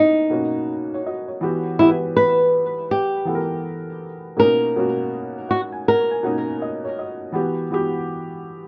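A flamenco guitar and a felt-muted upright piano begin together in this cosy, mellow hip hop fragment, set at 81 BPM in 4/4 with a swung sixteenth-note feel in B major. The fingerpicked acoustic guitar carries the melody up front, its tone softened by a low-pass filter and trailed by tape echo. Beneath it, the piano supplies an intimate, muted accompaniment, sitting lower in the mix and also rounded off by a low-pass filter. The harmony moves between Bmaj9 and Emadd9, giving the short passage a gentle, unresolved sway. The guitar drops out at 6.6 seconds, leaving the soft piano alone until 8.7 seconds, all within light reverb and the rough, homely feel of a demo mix.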